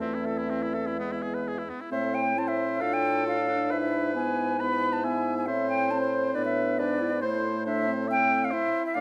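Quick classical-period wind quintet movement in A minor, urgent and stormy, pressing forward at 124-141 BPM in 4/4 with a rubato feel, cut from a longer piece and running 9.0 seconds with all five players sounding throughout. An airy, up-front flute with vibrato and a crisp attack carries the melody over a clear oboe second line with light vibrato, while a mellow clarinet and a smooth-topped French horn fill in the accompaniment over a dark, distant, roomy bassoon bass line. Close, detailed microphones sit in a moderate concert hall reverb, and the harmony moves from Am/E through Dm/A and E7/G# before settling on Am at 7.2 seconds.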